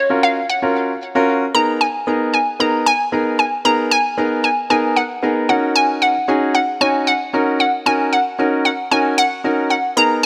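Pop at 114 BPM in G# dorian, this energetic, driving fragment of a longer piece sets a hollow, bouncy, detuned square-wave pluck melody with chorus, delay, ring modulation and a filter sweep up front over a polished baby grand piano accompaniment, all bathed in a lush hall reverb as it moves from F#maj7 to G#madd9 and D#m7 and builds from 1.5 seconds to the cut at 10.3 seconds.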